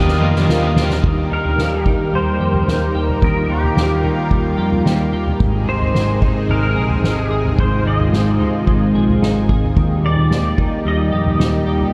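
A soft-mallet drum kit sets a steady, straight 4/4 pulse at 110 BPM, entering just after the downbeat with a drum fill through the first second before settling into a roomy, distant groove with a fat snare and punchy kick under a rolled-off top. This blissful, dreamy dream pop passage in Eb major, cut from a longer piece, moves from Ebadd9 to Ab at 5.4 seconds and back to Eb at 9.8 seconds. A vintage muted picked electric bass anchors the low end with a dark, round, foam-muted tone, while a semi-hollow electric guitar plays clean, hollow-body arpeggios in the background through analog chorus and diffuse ambient delay. Up front, a lush unison pad of detuned sawtooth and square waves with an airy noise layer holds bright, thick sustained chords under chorus, and a crunchy overdriven guitar with tremolo and ensemble chorus appears only briefly, stopping at 1.1 seconds. Over it all, a twangy pedal steel guitar carries the melody between G4 and Eb5 with fingerpicked slide and volume swells, drifting through ensemble chorus and delay until 11.6 seconds. 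The mix is soaked in a huge ambient reverb with a 7.3-second tail, giving the whole passage a hazy, floating spaciousness.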